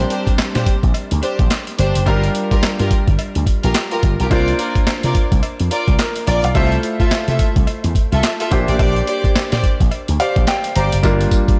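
A 16th-note swing at 107 BPM in 4/4 drives this confident, bouncy new jack swing excerpt, built on a gritty, compressed sampler-style drum kit with a thumpy kick, high-tuned snare, handclaps, hi-hat and tambourine, sitting up front beside a punchy, bright slap bass run through an envelope filter. A clear, polished baby grand piano carries the accompaniment with slapback echo, while a lush bowed string section adds vibrato-rich stabs treated with digital delay and slapback, and a very quiet, dry cowbell ticks along in the background. The chords cycle through Bb69, Gm7, C9sus4 and Fmaj7/C in a small, lightly reverberant room, and the piano steps forward with a fill at 9.9 seconds.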